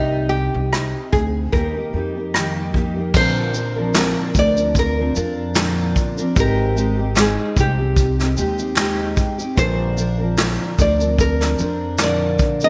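A gently swung sixteenth-note lilt in 4/4 drives this heartfelt, carefree acoustic pop excerpt. A small, warm nylon-string guitar carries the melody over a full-bodied, double-tracked steel-string acoustic guitar, fingerpicked up front with audible finger squeak, while a woody, growly pizzicato upright bass anchors the low end. A vintage brush kit joins at 0.7 seconds with a punchy kick, medium-tuned snare, rim clicks, shaker, dark cymbals and a crash, its rolled-off sound treated with gated reverb. Crisp group handclaps slip in at 4.0 seconds, barely audible beneath the band. The harmony moves from Cm and Eb into a section beginning at 3.1 seconds that alternates Bbadd9 and Abmaj7, all set in a moderate plate reverb with a bright 1980s-style digital production sheen.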